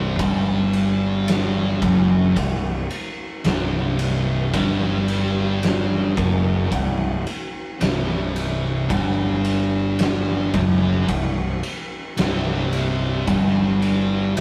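Heavy and sludgy, this stoner and doom metal excerpt crawls at 55 BPM in 4/4, tuned to A4 = 436 Hz, as a thick, double-tracked fuzz guitar grinds out a distorted C5 riff between C2 and G3 over a round, overdriven fingered electric bass down at C1 to G1, while an oversized low-tuned drum kit entering at 0.2 seconds adds a punchy kick, fat snare and ride cymbal with gritty, saturated weight, all captured in a rough rehearsal-room recording with moderate studio reverb.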